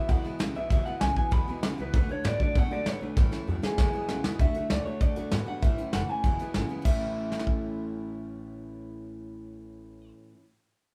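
Rockabilly with a retro, upbeat character, this brief cut from a longer piece moves on a straight four-beat pulse, like a band playing live together in one room with light reverb. An electric guitar through a small old amp carries the melody, its warm, slightly broken-up, twangy picked tone bathed in spring reverb. Beneath it, a second small-amp electric guitar plays a bright, picked riff, while a picked steel-string acoustic guitar supplies full-bodied accompaniment with audible finger squeak. A pizzicato upright bass with gut strings sits in the background, woody and thumpy. Up front, a soft brush drum kit with a tight kick and medium-tuned snare plays a fill from 3.2 to 4.4 seconds and drops out at 7.5 seconds, as the chords cycle through E, D and A.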